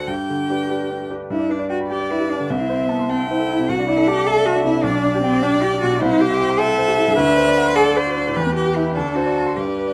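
Quick classical-period piano trio movement in G major and a straight 6/8 at 101 BPM (dotted quarters), cheerful and spirited, tuned to A4 = 435 Hz and heard as a short cut from a longer piece. A clear, vibrato-touched solo violin carries the melody, while a rich, focused cello sings a second line up front, and a bright, brilliant grand piano, also close, supplies the accompaniment across a broad range. All three play throughout the 9.9 seconds in a moderate studio reverb as the harmony moves from G through A minor and D seventh colours, touching E minor at 8.4 seconds before settling on D7.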